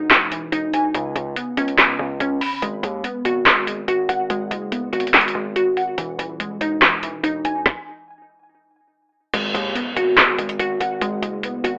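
Hard-hitting and eerie, this half-time trap hip hop excerpt at 143 BPM in G# minor sets crystalline, detuned wavetable pluck arpeggios, colored by chorus, cassette tape and analog delay, over a saturated, aggressive distorted 808-style bass and an up-front electronic drum kit of hard-clipped kick, woody snare, metallic hats, handclaps and crash, moving through Emaj7, Bsus2/C# and G#m7 before a stop at 7.7 s gives way at 9.3 s to a very quiet electronic impact, the mix carrying a telephone-like home cassette sound and moderate studio reverb.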